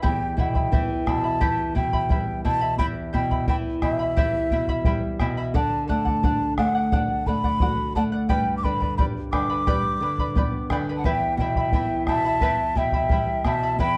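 A straight, unhurried 4/4 pulse carries this melancholic yet festive Andean folk fragment, with a round bombo beneath a fingerpicked nylon-string guitar with fresh, up-front strings and a bright, shimmering charango whose double courses ring out. Over them a mellow large wooden quena sings the melody with airy vibrato and expressive tonguing, and at 11.0 s a reedy bamboo pan flute with a breathy chiff joins as a distant second line, touched by tape echo. The sound is dry and close, in the manner of a 1970s studio recording.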